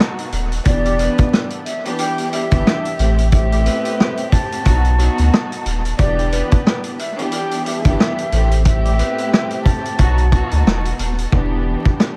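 A saturated, deep sub bass sits up front in this tough, gritty boom-bap hip-hop excerpt at 90 BPM in E minor, swung on the sixteenths, alongside a gritty vintage acoustic kit of tight kick, medium-tuned snare, rim clicks and hi-hats with a rolled-off top, the hi-hats dropping out at 11.3 seconds. A lush, bowed string section with a cassette-tape character and a breathy, mellow jazz flute carrying the melody both trail dub echo, while a tight horn section adds stabs from the background. The chords cycle through B, Em7 and Am7 in a small room coloured by heavy echo and vinyl crackle.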